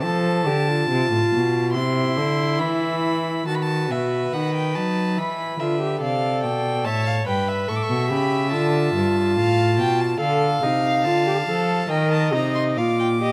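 A violin, viola and cello open together in this lively, joyful baroque-style fugue for string quartet at 71 BPM in 4/4, tuned to A4 = 439 Hz, with the reedy, gut-string violin carrying the melody high above a nasal, airy-bowed viola and an up-front cello with light vibrato on the bass, before a second violin enters at 3.5 seconds with its own line, each part bowed by one player in period style and caught by close, detailed microphones with light reverb in a passage cut from a longer piece.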